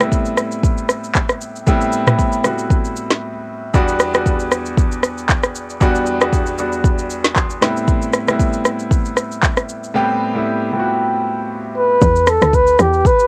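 Cut from a longer piece, this home cassette recording sits in a light reverb, with a late-night, soulful amapiano mood and a gentle swing. An intimate grand piano with audible action noise and long sustain carries the accompaniment up front, moving between minor ninth chords and adding a fill of its own near 7.1 seconds. Beneath it, a produced electronic afro-pop kit of deep kick, woody snare, rim click, shaker, handclaps and toms carries a tape-worn grain and pauses briefly for a break around 3.2 seconds. Just before the drop, at 11.8 seconds, a solo trumpet in a bucket mute enters with a dark, veiled tone, soft attack and light vibrato, played in a classical style and touched by analog delay and cassette coloring. At 12.0 seconds the piano stops and the drop arrives, bringing a punchy log drum bass with a fast attack, a noise layer and a mellow decay beneath the trumpet over the final moments.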